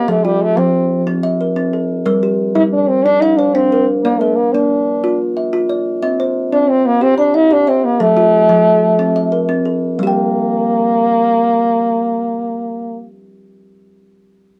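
Set in 12/8 at 121 beats per minute, counted in dotted quarters with a straight feel, this hypnotic, rippling piece draws on southern African traditional music and its mbira-style interlocking cycle, tuned to a G equiheptatonic scale. A kalimba spins out arpeggios across the whole clip, its thumbnail-plucked tones woody and ringing, with the boxy character of a solid board in a small room. Alongside it, a French horn carries the melody in a classical solo style, its warm voice touched by light vibrato and sounding distant and roomy. The harmony moves through F, Gm, Bb and C before returning to F, then turning to Gm as a second section begins at 10.0 seconds. Light reverb surrounds the pair, and the whole recording has the worn, warbling pitch drift of old cassette tape. The clip is cut from a longer piece.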